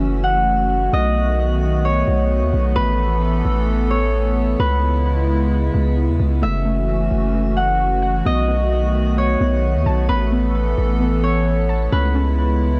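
A blissful, dreamy hip hop piece at 131 BPM in a half-time 4/4 feel, set in A lydian and cut from a longer work. A thumb-plucked Celtic harp carries the melody up front, its acoustic, ringing tone trailed by tape echo. Beneath it, a hollow, flute-like pad holds airy sustained chords with a slow attack and chorus, while a deep, sine-like 808-style bass sits forward with long notes that decay from a fast attack. At 6.4 seconds a warbling, lo-fi pluck joins in the background, spinning dark, vintage-toned arpeggios through chorus and tape echo. The harmony circles F#m7, B7, Asus2 and C#m7, and the mix has a light reverb and a gently rounded top end.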